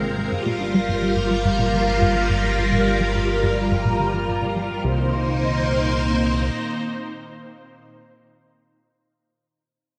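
A dreamy, reverb-soaked mix opens out in a lush hall, setting a cosmic, expansive mood for this short cut of ambient, sequencer-driven space music in C minor at 106 BPM in a straight 4/4. Up front, a vintage string machine plays full-ensemble sustained chords from G3 to C5, its soft-attack sawtooth tone thickened by a sub octave, a moving notch, phaser and ensemble chorus. Beneath it, a tight sequenced synth drives a riff in the background, a detuned sawtooth-and-triangle sound with a fast filter pluck, coloured by chorus, phaser and delay, and a filter sweep runs over this arpeggio sound through the first 4.8 seconds. A fat analog bass holds the low end between G1 and C2 with a thick, evolving detuned sawtooth tone, while a bubbling stepped-filter texture sits high and distant, its resonant random filter steps softened by a slow attack, long release, chorus and built-in reverb. The harmony moves from Gm7 to Cm7 at 4.8 seconds, and the strings sustain alone until 7.9 seconds after the other parts have stopped.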